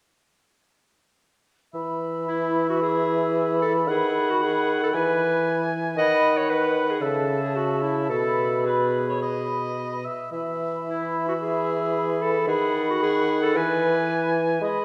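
A reverberant hall sound surrounds this graceful, lively passage, cut from a quick classical-period movement for symphony orchestra in E major at 112 BPM in 4/4, played with rubato. At 1.7 seconds a large flute ensemble enters together with the cor anglais and bassoon; the flutes sound airy and crisp-edged, set at a distance, with expressive vibrato. The cor anglais adds a warm second line with light vibrato. The mellow bassoon sits up front as accompaniment, its smooth top giving the low register a rounded weight. A clear, present clarinet joins at 2.3 seconds with a soft attack, carrying another second line in a classical manner. The harmony stays close to home, moving between E and B over D# with brief turns to A over C# and E over B before returning to E at 13.6 seconds.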